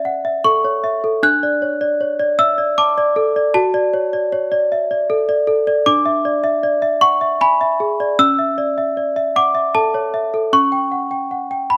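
A gentle, straight 3/4 pulse at 78 BPM carries this tender, dreamy classical lullaby in A major, tuned to A4 = 441 Hz and cut from a longer piece. A worn celesta plays alone throughout, spanning C#4 to F#6 with a bell-like, sweet tone from medium felt hammers, slightly out of tune and sitting up front, as the harmony moves from A/C# through D, D/F# and E7/D before closing on a rootless A7/C#. Close, detailed microphones and light reverb keep every delicate note intimate.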